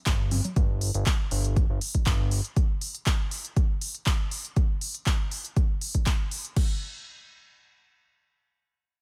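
A dry, close-sounding cut from a longer progressive house track with a euphoric, expansive mood: an up-front, overdriven electronic kick drives the steady pulse alongside a layered deep house kit of smooth hi-hats, handclaps and crash cymbal, while a fat, detuned sawtooth and square-wave analog bass pumps under sidechain with a filter sweep until 2.4 seconds, and a brief burst of tape-warm congas appears between 0.3 and 0.5 seconds.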